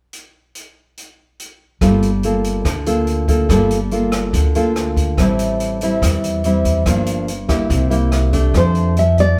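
This excerpt sounds like a band playing live together in one room, with light reverb and a natural studio-room ambience. It is a relaxed, sophisticated bossa nova at 143 BPM in a straight 4/4, tuned to A4 = 436 Hz. An open jazz drum kit begins alone at 0.1 seconds with hi-hat, rim click and a boomy kick. At 1.8 seconds a woody, pizzicato upright bass with steel strings and a warm, fingerpicked classical nylon-string guitar enter together, the guitar sitting up front with audible finger squeak as the harmony moves through Gm9, Am7, Gm7 and C7 before landing on F69. At 8.6 seconds a second fingerpicked nylon-string guitar, darker in tone and also up front with finger squeak, adds a brief high melody just as the passage cuts off.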